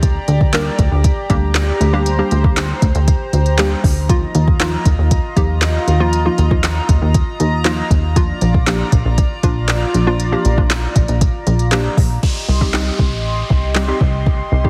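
A confident, energetic dance-pop groove at 118 BPM in C minor opens with all four core parts at once: a punchy, funky analog bass and a smooth, tape-warm R&B drum kit with a soft kick, woody snare, handclaps and smooth hats sit up front, while a hollow, bouncy square pluck and a shimmering, retro pulse-width pad breathe with sidechain pumping. The chords move from Gm/D through Ebsus2 to Bb, and the pluck carries a warbling, vintage chorus character against the pad's slow-attack sustain. At 12.2 seconds the harmony lands on Cm as an electronic downlifter enters, all heard through light reverb and a heavily compressed radio sound in this excerpt cut from a longer piece.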